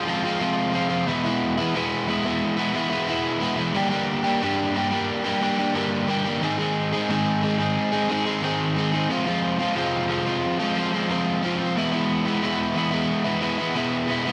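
A wet studio reverb surrounds this restless, cathartic rock fragment, where a lone overdriven electric guitar, picked, double-tracked, compressed and up front with digital delay, works through Fm, E, Gm and Ab chords from E2 to Ab4 across its 14.3 seconds.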